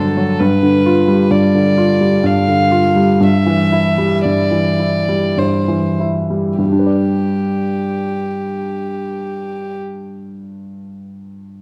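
Lyrical and tender, this short passage from a slow romantic classical movement unfolds in G major and 3/4 time, with a rubato pulse ranging from 47 to 67 BPM. A single bowed violin carries the melody, close and up front, its pure, airy sul tasto tone floating over a soft attack. Beneath it, a clear, present grand piano plays the accompaniment, sitting slightly louder in the balance. The harmony moves from G7 through a rootless Cadd9 over G, slowing through the opening 6.6 seconds before settling onto a G major chord as a second section begins. The violin falls silent at 9.8 seconds, leaving the piano alone until 11.6 seconds, all within a moderate recital-hall reverb and a dark, warm production.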